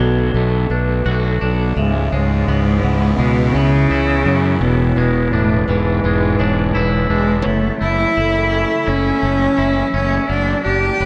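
In a straight 4/4 at 84 BPM, this brooding, cinematic post-rock passage in F# minor sets a rich, bowed cello melody with vibrato over a growly, fuzz-driven fingered bass that sits up front. Twangy, clean electric guitar arpeggios carry spring reverb and slapback echo, while mellow soft-mallet vibraphone arpeggios with fast motor vibrato and an evolving, morphing phased pad with a slow attack hover in the background. The chords move from Bm7 through C#m7 and E7 to F#m7, and a build-up begins at 7.5 seconds. A lush hall reverb gives the piece a big arena sound.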